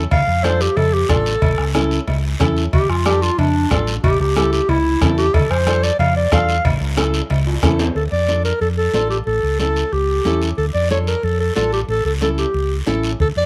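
Cumbia at a fiery, driving 184 BPM in D harmonic minor, this excerpt from a longer piece puts a clear, close-miked clarinet up front, soloing in a classical style over a fingerpicked flamenco guitar, whose warm tone carries an audible finger squeak, and a dark, round, punchy fingered electric bass. A raspy guiro and bright, thin-skinned congas set back in the mix run throughout, while a soft-beater bombo with a vintage, band-limited sound and distant, ringing cowbell and timbales drive the groove until a drum fill near 8.0 seconds. The dry, close recording has a small-room ambience and a 1970s studio character.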